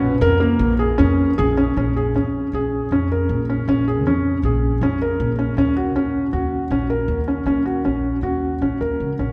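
Urgent and hypnotic, this fragment of contemporary chamber music moves in an uneven 5/4 meter, with a felt-muted upright piano rolling soft, mellow arpeggios up front, its thin felt and audible action noise giving an intimate, natural sound. An upright bass underpins it throughout with woody, thumpy pizzicato from steel strings, and the harmony shifts from Bbm7 to Ebm7 at 5.6 seconds. A long, wet cathedral reverb places both instruments in a church or concert hall.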